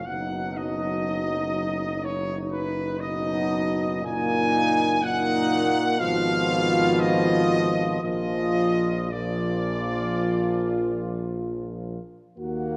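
A mellow trumpet section carries the melody up front with a soft attack, light vibrato and a smooth top, in this solemn, elegiac hymn-like excerpt for brass band, taken slowly at 52-63 BPM in 4/4 with a rubato feel. A distant, roomy French horn section sings a second line in the background, while two euphoniums give warm accompaniment and a tuba takes the bass beneath, moving through chords from B/F# to a closing Bb at 8.0 seconds. A concert hall reverb with a 1.7-second tail surrounds the ensemble.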